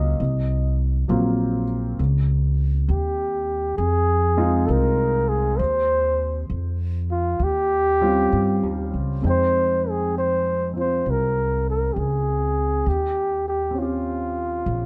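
Wistful and melancholic, this swinging jazz ballad fragment puts a breathy flugelhorn up front, carrying the solo melody with light vibrato and scooped notes. A baby grand piano accompanies with an intimate, natural tone, long sustain and audible action noise, while a woody, thumpy pizzicato upright bass also sits up front beneath it. The harmony turns at 9.2 seconds, all set in light reverb and a dark, warm production.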